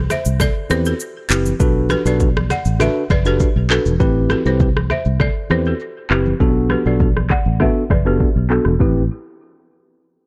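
A dry, close-sounding mix sits under a low-pass filter, with a filter sweep running from 0.0 to 8.8 seconds across this short cut from a longer mellow, smooth afrobeats groove at 100 BPM in A dorian, moving between Am7 and Bm7. A round, foam-muted fingered electric bass and an electronic afro-pop drum kit with a deep kick, smooth hats, handclaps, rim click, shaker and overdrive sit up front, joined at 0.7 seconds by a clean, mellow tine electric piano. A woody, buzzing balafon riff played with hard rubber mallets carries a digital delay, while low-tuned, thick-skinned congas sit very quietly in the background.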